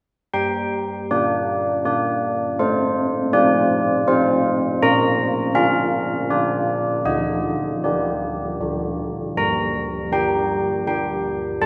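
Old church bells carry this short classical tune alone, sounding from 0.3 to 11.7 seconds in a solemn, wintry G minor at 80 BPM in a steady 3/4. Their bronze, clangorous tone has a distinct minor-third overtone and audible beating, softened by a padded clapper into something mellow, and they sit up front across a range from D3 to Bb5. The harmony moves from Gm through F/A and Bb, leans on a Dsus4 at 7.1 seconds, settles onto D, and returns to Gm at 9.4 seconds. A wet church reverb with a 3.2-second decay lets each strike ring on into the space. Tuned to A4 = 439 Hz and cut from a longer piece, the passage feels like a fragment of a cold, solemn peal.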